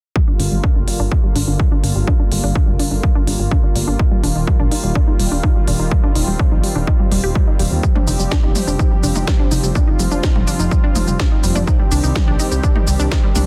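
Hypnotic and driving, this melodic techno excerpt rides an up-front, heavy electronic kick and a layered drum kit of cracking snare, smooth hats, shaker and toms, both tape-warm and re-recorded in a small room. A menacing, saturated detuned saw bass pumps beneath a lush, punchy unison pluck whose arpeggios carry cassette tape grain and tape echo under a filter sweep. A smooth analog pad with chorus and tremolo holds sustained chords through Gm7, Ebadd9, Fsus2 and Cm, all in a dense, heavily limited master with digital ambience.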